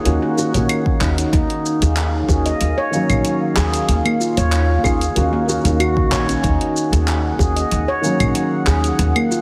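A growly, woody upright bass sits up front in this hypnotic, mystical stretch of organic downtempo, its thumpy pizzicato played on steel strings. Beside it, a ringing handpan played with the fingertips spins meditative arpeggios in a boxy small room, trailed by digital delay. A dark, felt-muted upright piano adds soft, intimate accompaniment with delay and sidechain pumping, while a detuned, warbling tape-like pad holds nostalgic, lo-fi sustained chords in the background with chorus, its own reverb and the same pumping. A tape-toned deep house kit of claves, handclaps, hi-hat and shaker runs throughout, and a deep, layered electronic kick joins at 0.9 seconds and drops out at 7.5 seconds. The whole cut rests on a single chord in a lush hall reverb, with a heavily compressed, radio-like sound.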